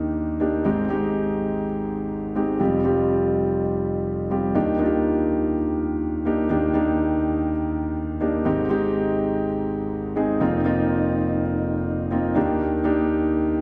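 Pop at 123 BPM in 4/4, uplifting and romantic, where a solo concert grand piano, warm with deep bass and long sustain, sits up front in a reverberant recital hall with dark, warm production, moving through Ebmaj7, Abmaj7, Fsus2 and F7sus4 chords before returning to Ebmaj7 at 12.4 seconds in this 13.6-second fragment of a longer piece.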